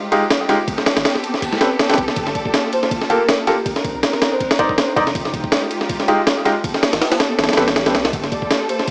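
Dark and frenetic, this drum and bass piece with a jungle edge is cut from a longer track and runs at 161 BPM in 4/4, its 16ths carrying a light swing. A sampler-style breakbeat kit sits up front, pitched up and compressed, with a thumpy kick, a high-tuned snare and ride cymbal set in a small room ambience. Beneath it, muted strings hold veiled, bowed chords with vibrato and a smooth top, while a clear baby grand piano throws stabs through dub echo over a progression moving from Fm9 through Am9, Gm9 and Cm9. A deep, thick sub bass enters at 1.0 seconds and stays in the background, and a breathy, flute-like synth lead with chorus, cassette tape colour and dub echo carries the melody from 2.4 seconds, returning briefly near the end. A very quiet electronic swell appears at 7.6 seconds, and the whole recording has a dry, gritty hardware character with transformer saturation, vinyl crackle and a small speaker sound under light digital reverb.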